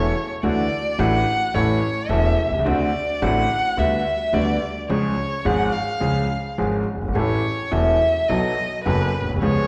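A rubato tango in 4/4 with a passionate yet playful mood, this brief passage cut from a longer piece is carried by a bowed violin solo whose soft attack, vibrato and expressive portamento sit up front. A clear concert grand piano accompanies with deep bass and a natural tone, while a pizzicato upright bass adds a woody, dark low end beneath harmonies that move from Dadd9 through D7 and Gmaj7/D to a closing B7. The recital hall's lush reverb gives the trio the spacious feel of a church or concert hall.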